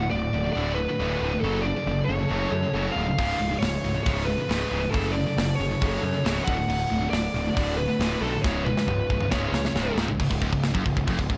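A dark, warm mix with its highs capped and a small-room ambience frames this aggressive, relentless stretch of heavy metal, cut from a longer piece. Two bright, high-gain guitars grind out a riff in the background beneath a growly, fuzz-laden picked bass up front, while a shadowy, distorted lead guitar with digital delay carries the melody and a very quiet bowed string section holds smooth chords with vibrato and portamento. A tight, mid-forward drum kit enters at 3.2 seconds and plays a fill from 8.4 to 10.2 seconds before the closing section.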